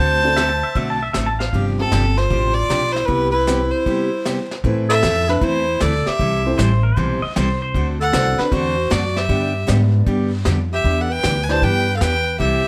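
A swinging 155 BPM 4/4 groove on swung eighths in C major drives this down-home western swing excerpt, with a woody pizzicato upright bass up front and a vintage brush kit playing brushed snare, hi-hat and tight kick in a dark, small-room sound. A clear, biting, nasal fiddle carries the melody, and a breathy subtone clarinet with light vibrato adds a jazz-style second line over bright, full-bodied picked acoustic guitar and a mellow upright piano in the background. A clean, compressed pedal steel slides in briefly at 0.4 and 6.6 seconds, and a short break at 3.9 seconds leads into the second section under light reverb.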